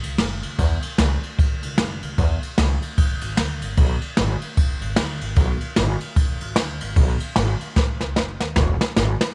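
The recording is dry, with little reverb, and the drums sit up front in an airy, polished studio room. This rowdy, retro rockabilly clip, cut from a longer piece, rolls along at 151 BPM in 4/4, with the eighth notes swung at 61% and the tuning set to A4 = 439 Hz. A jazz kit played with brushes carries the groove from the start, combining a boomy kick, a medium-tuned snare and dark ride cymbal. Beneath it, a plucked upright bass with gut strings gives a woody, thumpy low end, moving between E1 and E2 until 9.2 seconds. A drum fill from 7.8 seconds closes the passage, with the kit playing on to 9.3 seconds.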